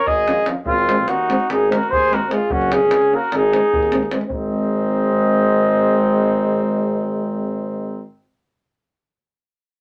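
A driving 9/8 pulse with a straight feel carries this festive, wild Balkan brass band piece, cut from a longer performance. A mellow flugelhorn leads the melody up front, sounding distant and roomy, while a clear trumpet plays a second line beneath it. Trombone with light vibrato and a vintage-toned euphonium fill in the accompaniment, and a warm tuba with a soft attack anchors the bass from farther back. A tight, acoustic davul, heard in a small room, drives the percussion through the opening section, where the harmony moves through Db, Ab and Gb. A new section begins at 4.3 seconds, and the davul drops out at 4.5 seconds, leaving the brass alone, all wrapped in a short, wet reverb with a classical-style polish.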